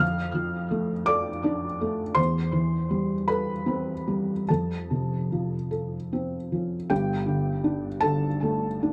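A felt-muted upright piano plays alone in this brief, reflective and melancholic neoclassical minimalist fragment from a longer piece, moving in a rubato 6/8 at about 48-57 BPM through Dm/F, Am7/E and F before reaching Gsus2 at 6.9 seconds, its soft, intimate, mellow tone, short sustain and audible action noise caught up front by close, detailed microphones with little reverb and a tape echo on the piano.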